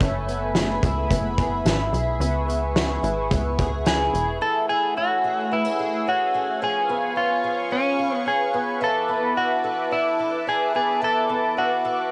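Recorded at home on cassette with light, small-room reverb, this hazy, ethereal dream pop excerpt moves at 109 BPM in a straight 4/4, in F# minor with tuning at A4 = 439 Hz. A swirling, detuned analog pad holds sustained chords throughout, its phaser and chorus lending a mellow, evolving glow. A fingerpicked twelve-string acoustic guitar plays bright, shimmering, octave-doubled arpeggios with audible finger squeak, coloured by analog chorus and tape echo. A loose indie drum kit with a fat snare and punchy kick sits in a distant, roomy space, joined by a funky, wave-folded analog bass with a fast-attack filter pluck, and both fall away by 4.4 s. From 3.9 s a dark, slightly broken-up electric guitar carries the melody up front through tape echo, as the harmony moves from F#m11 and C#m7 to F#m9, C#7 and E7sus4.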